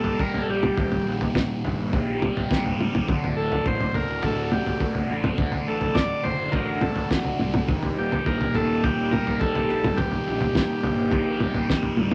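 A wet small-room reverb surrounds this dark, hypnotic psychedelic rock piece, where a buzzy vintage combo organ with spring reverb carries the melody over a thick, double-tracked fuzz guitar riff with phaser, a muffled, lo-fi, cloth-damped drum kit with a fat snare and tight kick, and a very quiet, round fuzz bass that enters at 0.5 s, while from 3.1 s a reedy second organ holds lightly vibrato chords in the background and faint, thick-skinned congas join.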